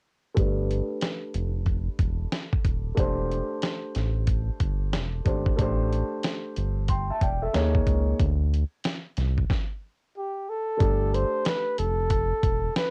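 Jazz-hop with a mellow, smoky mood, moving at 92 BPM in 4/4 with a swung sixteenth-note feel. A dark grand piano carries the harmony through chords such as G13, C69/E and Am7, its tone muffled by a low-pass filter and cassette tape coloring, with a filter sweep running across it from 0.4 to 10.8 seconds. Beneath it sits a round analog bass, deep and sustained with a fast attack and tube saturation, while a dusty, compressed sampler-style kit of thumpy kick, medium-tuned snare and hi-hat sits up front with gritty cassette texture. A break arrives at 8.2 seconds, with a stop from 9.5 to 10.8 seconds, and a close-miked flugelhorn enters at 10.2 seconds to play a soft-attacked jazz solo with scooped notes over the closing Gsus2. The sound is dry and intimate, like a home recording on cassette, and this excerpt is cut from a longer piece.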